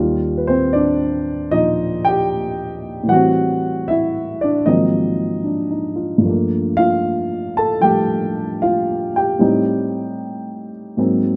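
A rough home-demo sound with light reverb and small-room ambience frames this brief, cool, swinging solo jazz passage at 76 BPM in 4/4, cut from a longer piece, where a dark concert grand piano sits up front with a mellow, deep-bassed, short-sustained vintage tone, ranging from Eb2 to A5 over Ebmaj9, Am7, Ab13, Gm9 and Am7b5 harmonies.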